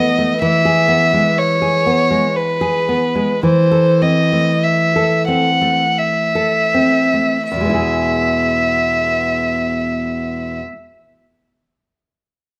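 A dark, intimate violin carries the melody up front, bowed sul tasto with light vibrato, a soft attack and a smooth top, in this serene, romantic duo whose rubato 3/4 slows through the opening 7.5 seconds. Beneath it, a full-bodied nylon-string guitar fingerpicks a deep classical accompaniment, finger squeaks audible, moving from E to Am/E and back to E as a new section begins at 7.5 seconds. Close, detailed microphones and light reverb give this excerpt from a longer piece a near, warm presence.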